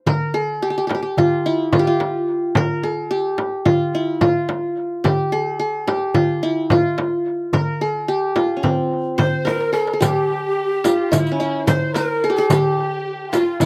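A straight 9/8 pulse at 217 BPM in eighths drives this passionate Turkish makam ensemble excerpt, where a warm, bright-edged, plectrum-plucked qanun with slapback echo carries the melody up front over a crisp, small metal-shell darbuka played with soft hands and a close frame drum, until breathy cane pan pipes with vibrato and chiff and a dark, lush, woody bowed violin section set in the background join as echoed second lines at 9.2 seconds, and after a drum fill at 9.5 seconds a new section opens at 10.0 seconds with a dry, jingling riq, all heard under light outdoor reverb.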